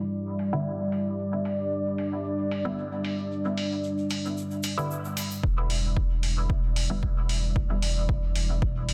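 A moody, detuned sawtooth pad sits up front with chorus and sidechain pumping, holding an Em7 chord in this hazy, hypnotic dub techno cut at 113 BPM in E minor, as a filter sweeps through the opening, metallic electronic hi-hats tick, a muted, full-bodied chord stab enters with phaser, pumping and dub echo, and a grainy, bright tube shaker sits close and dry in the background, until at 5.4 seconds a punchy, layered kick and a round, soft sub bass, pumping with the pad, arrive under a light reverb in a dense, heavily limited master.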